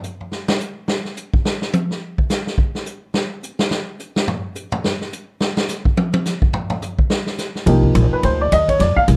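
This fragment of a longer small-group jazz piece opens on a drum solo, a swinging big-band kit working its hi-hat, kick, ride, snare and toms at a brisk 212 BPM in 4/4 with a light swing on the eighths. The kit sounds roomy and acoustic, with a punchy kick, a medium-tuned snare and a rolled-off top end that gives the solo a soft, late-night glow. At 7.7 seconds the upright bass and piano enter together on a Cm9 chord, setting the tune in C minor. The bass is plucked on gut strings, dark and thumpy, sitting up front in the low register. The piano brings a warm, woody accompaniment with short sustain, stopping at 9.0 seconds while bass and drums carry on to the end. A light reverb adds a touch of space to the bop-flavoured swing.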